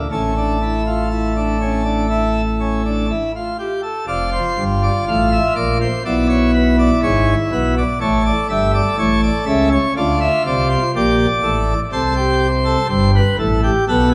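Classical, baroque-style three-part fugue for solo pipe organ, heard in a short cut from a longer piece, with a serious, contemplative mood and a steady, straight pulse in four. The organ speaks on a full plenum with bright mixtures and baroque voicing, spanning F1 to F5 and sitting up front in a wet, reverberant space with a 1.6-second decay. After an opening passage, a new section begins at 4.1 s, moving through Dm/F, E7/B and A7 before settling toward Dm and Am/C.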